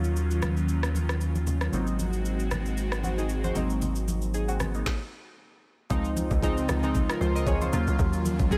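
A knocking kick and woody snare from a produced electronic R&B drum kit, up front with rim click and shaker, drive this late-night, hypnotic amapiano excerpt at 115 BPM with a 16th-note swing, while round analog keys with chorus and phaser play Ebm9 and Ab7 chords over a deep sine sub bass and an airy, breathy pad pumping under sidechain. The sub bass stops at 4.8 s, and after a break from 4.9 s a hollow, bouncy log drum bass takes over the drop at 5.9 s as the harmony moves to Dbmaj9 and back to Ebm9. Very quiet, bright congas with thin skins sit close and dry beneath it all in a mix with little reverb.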